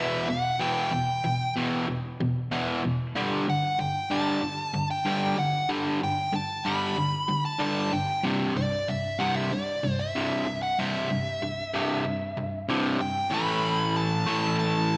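A heavy, menacing rock excerpt opens with a bright, double-tracked, overdriven semi-hollow guitar riff sitting low and up front beside a nasal lead guitar with a parked wah, overdrive and slapback echo carrying the melody above it, moving through Em, G5 and C before a brief turn to A5 at 13.3 seconds, set in a wet scoring-stage reverb with a big arena sound and some lossy compression artefacts.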